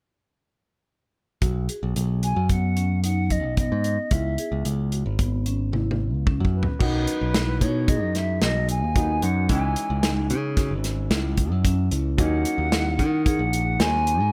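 In a straight 5/4 at 112 BPM, this driving, intricate progressive instrumental in B major, cut from a longer piece, starts at 1.4 seconds with an up-front acoustic drum kit with a tight kick, a bright picked electric bass and woody soft-mallet marimba arpeggios; a distant, hollow flute with vibrato carries the melody from 2.2 seconds, and after a drum fill a polished grand piano joins in the background at 6.8 seconds as the chords move from B and C#m to D#m7 under light reverb.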